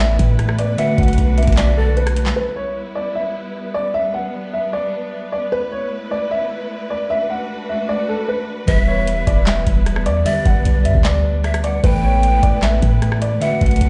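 A half-time trap beat from a booming analog drum machine, with a deep kick, crisp snare, handclaps, rim clicks and metallic hats, pairs with a clean, boomy 808-style bass to set a dark, menacing hip hop mood in this excerpt from a longer piece. A worn, boxy grand piano carries the melody through plate reverb and tape echo over lush, bowed symphonic strings, while a mellow tine electric piano, colored by a phaser and softened by a low-pass filter, adds accompaniment. Breathy cane pan pipes with tape echo trace a second line, and the drums, bass, electric piano and pipes fall away by 2.4 seconds, leaving piano and strings alone until everything but those two returns at 8.7 seconds, all in a big, bare room.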